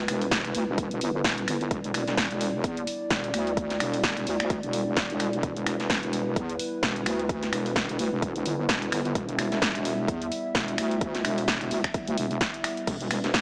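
Bass house with a swaggering, gritty mood, built on a heavy, saturated wobble bass with overdrive and chorus up front, a dark, nasal analog pad holding sustained chords with sidechain pumping, a big-room dance drum kit of punchy snare, hi-hat, finger snaps and crash cymbal entering at 0.1 seconds, and a punchy electronic kick joining at 0.3 seconds, all heard through light reverb and a small-speaker sound in this brief section cut from a longer piece.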